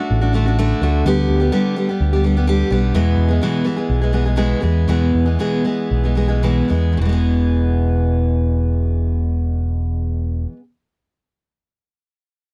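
A warm, nostalgic mood hangs over this brief rock fragment, cut from a longer piece and set in a straight 4/4. A picked steel-string acoustic guitar carries the accompaniment, its bright, fresh-stringed auditorium tone sitting up front as it moves from D to G over D and then settles on E. Beneath it, a picked electric bass adds a dark, round, punchy low end with an amped edge, also placed close and forward. The pace slows from about 2.9 seconds until 7.0 seconds, where a new section begins. The sound is dry and close, with little reverb, in the manner of a 1970s studio recording.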